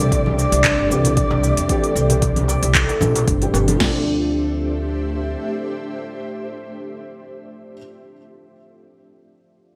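Meditative and gently glowing, this short cut from a longer organic downtempo piece moves in a lightly swung 4/4. A breathy, flute-like synth lead with vibrato carries the melody through the opening seconds. Beneath it, a concert harp plays ringing, fingerpicked arpeggios roughened by 12-bit sampler grit and digital delay, while an ethereal pad holds chorused, tremolo-laced chords with a slow attack. Woody pizzicato upright bass sits lowest and loudest, tube-saturated and pumping with the sidechain, and a soft, felt-muted upright piano with audible action noise murmurs in the background, outlasting every other part to 9.8 s. Two overdriven electronic kits ride up front until about 3.9 s, both in gated reverb: one brings crisp hi-hats, congas, handclaps and shaker, the other a deep kick, punchy snare and crash, with a very quiet, band-limited darbuka beneath them. The harmony moves from Cadd9 to Dm7 at 3.8 s, and the production has a bright 1980s-style digital sheen set in a moderate plate reverb.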